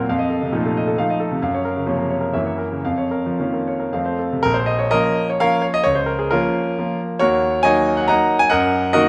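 Capricious and wistful, this short fragment of a longer classical piece is a romantic triple-time dance in Bb minor for solo concert grand piano, its dotted rhythms pushed and pulled by rubato at a tempo that drifts between 107 and 148 BPM. The piano sounds clear and natural, sitting up front with a deep bass and long sustain, spanning Bb1 to Bb5 across harmonies that move from F7 through Gbmaj7 before settling onto Bbm at 4.4 seconds and wandering toward Ebm7. A moderate scoring-stage reverb of 1.7 seconds surrounds the instrument with a gentle sense of space.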